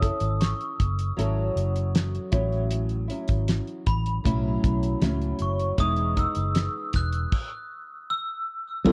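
A dry, damped 70s drum kit with a fat snare and tight kick sets a straight 78 BPM in 4/4 under a round, foam-muted fingered electric bass, while a dark, fingerpicked flamenco guitar bathed in lush chorus and vibrato moves through F#m7, A6 and Emaj7. Above them a glockenspiel struck with brass mallets carries a sparkling melody through analog chorus and tape echo, and this fragment of indie bedroom pop sits in a small room with worn, warbling cassette pitch drift that makes it feel lonely and hazy. A stop arrives at 7.3 seconds, and at 8.8 seconds a mellow, flute-like tonewheel organ with fast rotary speaker steps up front, joined at 8.9 seconds by a barely audible, nostalgic tape-like pad.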